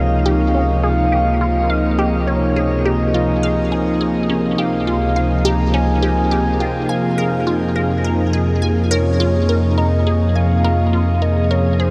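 This cosmic, luminous slice of ambient, sequencer-driven space music opens with all four parts sounding together from the start, drifting over a straight 104 BPM pulse in 4/4 and settling in Db lydian, with the harmony moving from Dbadd9 to Fm at 6.9 seconds. A bright, up-front sweeping resonant pad carries sustained chords, its detuned sawtooth tone evolving through a filter swell and slow attack under a coat of chorus. Above it, a soft octave-layered synth lead sings the melody in a round, dark triangle-and-sine voice with a sub octave, vibrato, chorus and tape echo. A juicy, squelchy resonant blip pluck runs a riff with fast attack and short decay, its detuned sawtooth and noise layer sparkling through a moving notch and phaser, trailed by tape echo. Underneath, a deep sine sub bass holds the low end, while the whole cassette-tape recording is bathed in a shimmering reverb with a long 8.1-second tail.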